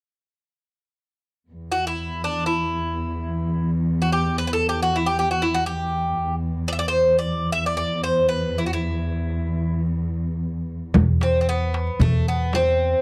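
The bright, metallic Greek bouzouki rings up front, its picked double strings joined by some octave-doubled strings as it carries a hypnotic, longing melody in free time, drawn from a Turkish makam ensemble piece. Beneath it, a dark symphonic cello section holds a low drone from 1.5 seconds, its bowed, lush ensemble tone woody and soft in attack, with vibrato. Near the close, at 10.9 seconds, a crisp metal-shell darbuka sits in the background while a deep, large frame drum adds weight from a small room. The cellos drop away at 11.0 seconds as a thumpy upright bass with gut strings takes over the low end, plucked pizzicato and placed up front. The recording has the dry, close feel of a 1970s studio, and this short passage is cut from a longer piece.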